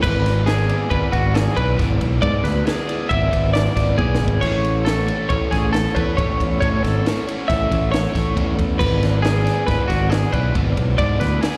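A straight 5/4 pulse at 137 BPM drives this intricate, wistful math rock and midwest emo excerpt in A major, where a bright, twangy twelve-string electric guitar plays clean, picked arpeggios up front with plate reverb and slapback echo over a double-tracked, overdriven electric guitar riff carrying its own slapback, while a fuzzy fingered bass sits forward beneath them and a compact cocktail drum kit with punchy kick, high-tuned snare and dark cymbals adds a fill at 4.0 seconds, the live gig heard through the venue's PA in a recital hall's reverb as the chords move from E7/G# to A and back.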